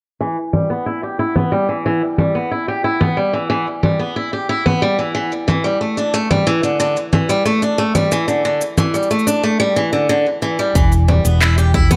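Intimate and delicate, this folktronica excerpt centres on a boxy, up-front picked acoustic guitar playing swing-style arpeggios through a low-pass filter and delay, moving from Em to A7sus4, while tape-warm electronic cabasa, congas and handclaps, re-recorded in a large room, play alongside it. Both the guitar and the percussion carry a filter sweep until 10.8 seconds, when a dark, round, punchy fingered electric bass and a deep, overdriven electronic kick drum arrive as the harmony returns to Em. Light reverb and digital ambience lend the whole a soft sense of space.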